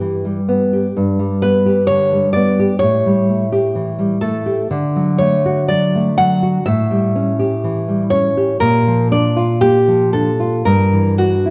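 A thumb-plucked nylon-string guitar carries the melody, entering at 1.4 seconds with a warm classical voice that sits up front in the mix. Beneath it, a second nylon-string guitar has been fingerpicking the accompaniment from the very start, its tone bright and full-bodied with a deep classical character. This romantic, serene duo moves in a slow, flexible rubato around 56-65 BPM in 4/4, and both guitars play through to the end at 11.5 seconds. The harmony drifts from Em/G and G through A7 and D, then turns toward Bb and closes on Gm6, lending a tender, shadowed color to the passage. A wet recital hall reverb surrounds the two instruments, and the dark, warm production gives this fragment of a longer piece an intimate glow.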